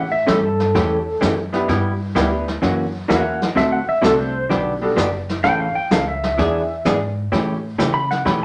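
Playful and cheerful, this western swing country piece moves at 128 BPM with a swung 4/4 feel, as an up-front pedal steel guitar takes a clean, compressed, fingerpicked solo full of slides and volume swells over a dark, picked hollow-body jazz guitar accompaniment. A woody, thumpy pizzicato upright bass and a vintage brush kit with a punchy kick and rolled-off top, entering at 0.3 seconds, carry the rhythm, while a bright, slightly detuned upright piano with audible action noise sits in the background from 1.5 to 5.0 seconds. The mix is bathed in a short, wet studio reverb with a mellow top end.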